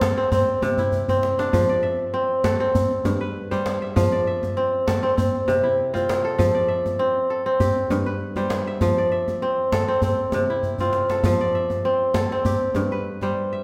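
Kora and djembe begin together in this hypnotic, flowing excerpt of West African traditional music, cut from a longer piece in a steady 4/4 with a straight feel. The fingerpicked kora sits up front, spinning crisp, ringing arpeggios that range across its low and high registers over a cycling pattern of C, F and G chords. The acoustic djembe sounds deep and carries a metallic rattle, placed up front yet with a distant, large-room quality. It plays a short fill at 0.8 seconds that leads into the main section, and another at 10.6 seconds. A wet recital-hall reverb surrounds the music.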